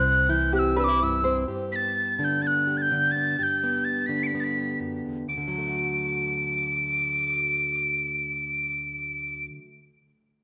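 A straight 4/4 pulse at 126 BPM drives this anthemic, uplifting folk passage in D mixolydian, cut from a longer piece and tuned slightly flat to A4 = 436 Hz. A breathy, mellow tin whistle sits up front with vibrato and a tongued chiff, carrying the melody over a full-bodied, fingerpicked steel-string jumbo guitar. Early on, a light, thumb-plucked ukulele adds arpeggios and a round, dark electric bass holds the low end, both dropping out by 1.5 seconds as the chords move from C to G, before a shift to D at 5.3 seconds. A wet echo-chamber reverb and small-room ambience wrap the whole passage in a soft, dark top end.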